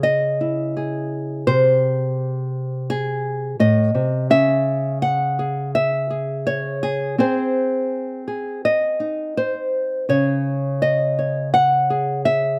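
A fingerpicked nylon-string guitar carries this short folk passage alone, its small, warm tone placed up front and close to the listener. The mood is reflective and melancholic, moving in a steady, straight 4/4 through a brief stretch taken from a longer piece. The harmony circles between C#madd9, G#/B# and C#m, returning to C#madd9 at 10.1 seconds. The guitar ranges from A2 up to F#5, and it is tuned slightly low, to A4 = 437 Hz. Recorded outdoors, the sound is dry and intimate, with little reverb or surrounding space around the strings.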